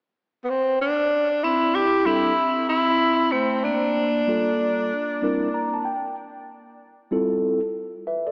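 A dreamy mix soaked in lush hall reverb, with an AM-radio tint, frames this cool, relaxed hip hop excerpt at 95 BPM in C major, swung on the sixteenths. Up front, a breathy, whispered tenor saxophone with vibrato carries the jazz-style melody through tape echo. Beside it, a bright, metallic vibraphone struck with hard mallets adds a close-miked second line, also with tape echo. A mellow, clean tine electric piano, heard as if through built-in speakers, enters at 2.1 seconds with chords moving through C69, Gm9, C9 and Fmaj7, plays a fill at 5.2 seconds, and carries on alone after the saxophone and vibraphone stop at 5.9 seconds.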